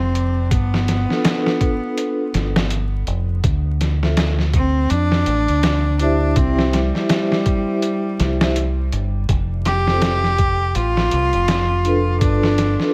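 Vinyl crackle and a digital ambience frame this brooding, melancholic trip hop excerpt, which moves at 82 BPM with a swung sixteenth-note feel over chords shifting from G7 through Dm7, C and F. Up front, a gritty, pitched-down, tape-warm sampler-style kit with a thumpy kick and medium-tuned snare sits beside a dark, round fingered dub bass thickened by tube saturation. A biting, nasal solo cello carries the melody with light vibrato and tape echo, while a dry, close-miked vibraphone with slow motor vibrato and tremolo enters at 1.1 s with metallic, ringing accompaniment.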